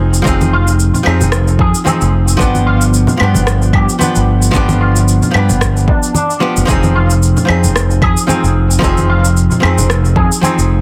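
Wistful and relaxed, this short sunset chillout excerpt moves at 112 BPM in 4/4 with a gentle 16th-note swing, cycling from Fm7 to G7 and back to Fm7 at 6.7 seconds. Up front, a fretless electric bass sits low, its round, punchy tone thickened by a lush chorus. Beside it, a dark, clean archtop guitar, picked and compressed with a hollow-body character, plays the accompaniment through tape echo. A twangy envelope-filtered electric guitar adds picked arpeggios, coloured by analog chorus and tape echo. The groove comes from a punchy, layered electronic kick and a produced pattern of electronic shaker, claves and rim click, with bright, soft-handed congas sitting in the background. Light reverb and digital ambience surround the parts, and the master is dense and heavily limited in a modern way.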